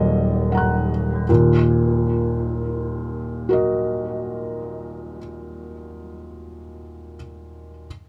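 A felt-muted upright piano plays alone for the whole of this short 7.9-second cut from a longer reflective, intimate neoclassical minimalist piece in a rubato 6/8, its dark, mellow tone sitting up front with audible action noise and tape echo in a light reverb, slowing down over the opening 1.3 seconds before a new section begins.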